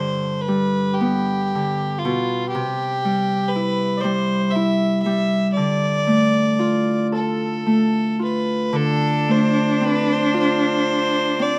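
This rough home demo has a moderate, small-room ambience and captures a brief slice of a longer Celtic folk slow air. The mood is longing and haunting, unfolding in a free, rubato 6/8 feel. Up front, a single bowed fiddle carries the melody with an earthy, rich tone, a smooth top and light vibrato, touched by a slapback echo. Beside it, an acoustic Celtic harp is fingerpicked, its ringing, warm accompaniment moving through G, C and D minor. At 8.8 s, as the harmony shifts to Dm7, a focused, distant cello enters with a bowed second line on a single note, D4, sung with vibrato.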